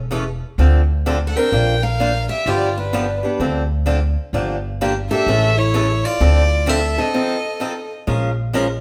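A warm, sul tasto violin with light vibrato and an airy bow carries a fiery, virtuosic jazz manouche melody in D minor at 128 BPM. It enters at 1.3 s together with a bright, finger-squeaking steel-string guitar second line over a boxy, picked swing guitar and woody pizzicato upright bass, all captured live in one large room with moderate studio reverb, with a break at 7.1 s in this cut from a longer piece.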